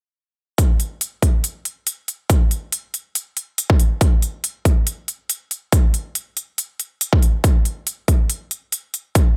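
A dry, up-front mix opens this aggressive, heavy dubstep cut from a longer piece, where a punchy, layered electronic kick drum and crisp, layered electronic hi-hats, both tape-warm and re-recorded in a large room, play together from 0.6 to 9.2 seconds in a half-time 4/4 feel at 140 BPM with a 54% swing on the sixteenths.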